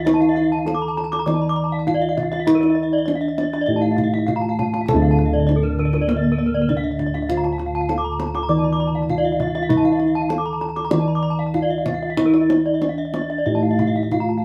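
Shimmering and hypnotic, this excerpt of Balinese gamelan moves at 100 BPM in a straight 4/4 in D pelog. A mellow bronze metallophone struck with padded disc mallets carries the melody, while two bright, horn-mallet metallophones ring out arpeggios above it, the quieter one airy, all three with the beating shimmer of paired tuning. Round, up-front bossed gongs hold down the bass beneath a tight kendang, and the whole ensemble plays live together in a moderate studio room with a vintage, band-limited character on the gongs, drum and melody instrument.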